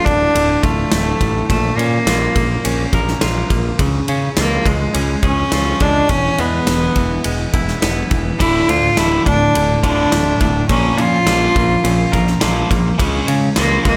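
A bowed cello carries the melody up front from the opening second, its single player giving a biting, nasal, earthy tone with light vibrato and a trail of analog delay. This cathartic, angsty stretch of quiet-loud alternative rock, cut from a longer piece, moves in a straight 4/4 through a brooding cycle of Dm, Bbm, C# and E. Beneath the cello, a clean semi-hollow electric guitar picks arpeggios in the background, its hollow-body ring also carried by analog delay. A growly, direct-sounding picked electric bass anchors the low end, while a big, natural acoustic drum kit with a punchy kick, medium-tuned snare and bright ride cymbal sits up front in a large room. At 8.4 seconds a tight, distorted, picked guitar riff enters, thickening the texture as the chord cycle returns, all framed by a moderate studio reverb.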